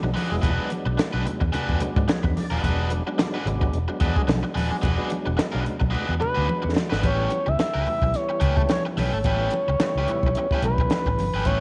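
A small room's light reverb frames this brief funk cut, its top end rolled off above 10.4 kHz, strutting along at 109 BPM in 4/4 with a playful 16th-note swing. Underneath, a vintage foam-muted fingered electric bass sits round and punchy, alongside a compact cocktail drum kit whose high-tuned snare, punchy kick and hi-hat enter at 0.2 seconds, with bright, thin-skinned congas tucked into the background. A biting overdriven guitar picks out accompaniment through spring reverb, while a fat, percussive tonewheel organ with key click, chorus vibrato and a slow rotary speaker throws stabs and a short fill near 1.8 seconds. The harmony rests on E9 before shifting to A9 at 7.0 seconds, just after a drum fill ushers in the second section. From 6.2 seconds an expressive sawtooth synth lead takes the melody, mellow and sustained with chorus and vibrato, riding above the groove until the cut ends.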